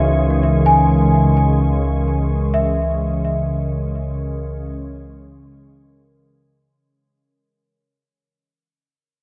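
Ambient music in free time, this short excerpt from a longer piece settles on a single C#m69 chord in C# dorian, tuned slightly low to A4 = 438 Hz, with a spacious, serene mood. A warbly, tape-like pad holds sustained chords with a slow attack and long release, its detuned, nostalgic lo-fi tone thickened by chorus and its own reverb. Over it, a worn celesta plays delicate arpeggios, bell-like and slightly out of tune, with a vintage, band-limited sweetness and a delay trailing each note. Beneath, a round analog bass sits up front on a deep, dark C#2, while an organ-like drone hums calmly between C#3 and G#3, its detuned unison sine tone spread by ensemble chorus. The whole dreamy mix is soaked in a lush hall reverb with a 3.2-second decay, and a fade-out begins at 1.7 seconds and runs to 6.7 seconds.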